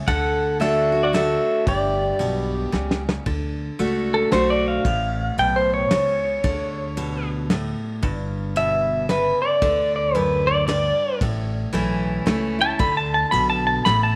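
A clean, up-front pedal steel guitar carries the melody with slapback echo and slide, taking a solo from 3.3 seconds in this easygoing, nostalgic honky-tonk and classic country waltz at 113 BPM in D major, backed by a full-bodied picked acoustic guitar, woody upright bass and dark, soft brush drums that play a fill just before the solo, all set in moderate spring reverb.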